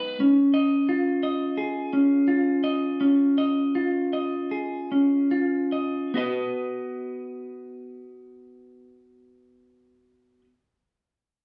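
Rock in a hopeful, euphoric mood: an electric guitar through a small old amp plays arpeggios for the full 10.4 seconds, its picked tone bright, twangy and slightly broken-up, sitting up front. The music slows down from 0.2 to 6.2 seconds over a C#add9 chord, then settles on B for the second section. A wet studio reverb and the feel of a band playing live in one room give the sound a lively space, and the clip is cut from a longer piece.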